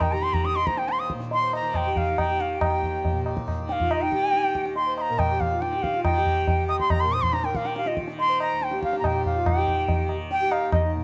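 A bright, airy bansuri with vibrato leads this devotional, meditative Hindustani excerpt in raga Bhupali on Eb at 140 BPM, up front beside low-tuned tabla, while a mellow, breathing harmonium carries a second line over a shimmering, buzzing tanpura drone, all in moderate spring reverb and a dark production as the tempo speeds up across its 11 seconds.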